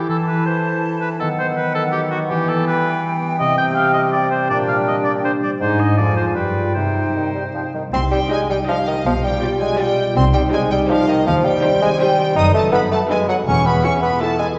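Heard from further back in a reverberant scoring stage with softened highs, this cut from a longer playful, whimsical film cue at 162 BPM in 3/4 moves from E minor to C minor at 3.4 s, as an airy silver concert flute, a distant clarinet and an up-front oboe weave second lines over a clear bassoon, mellow French horn section chords and ringing thumb-plucked harp arpeggios, until at 7.9 s a lush violin section, a dark cello section, a bowed double bass section and a faint triangle enter, with a focused violin melody and a very quiet viola accompaniment joining at 8.3 s for a magical, mischievous close.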